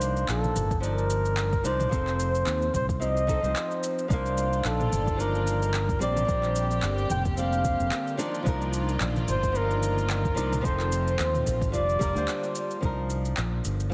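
A lightly swung 110 BPM groove of overdriven deep house handclaps, shaker and toms, joined at 0.7 s by a soft electronic kick, drives this relaxed sunset chillout excerpt in C dorian. Over it, a dark, veiled bucket-muted trumpet with light vibrato carries the melody and a fingerpicked flamenco guitar with fresh strings accompanies, both through tape echo, above a punchy, up-front fretless bass with tube saturation and ensemble chorus. Floating sul tasto strings enter at 4.1 s, and the chords move between Cm11, F7 and Bb69, set in a plate reverb and a heavily compressed radio-like sound.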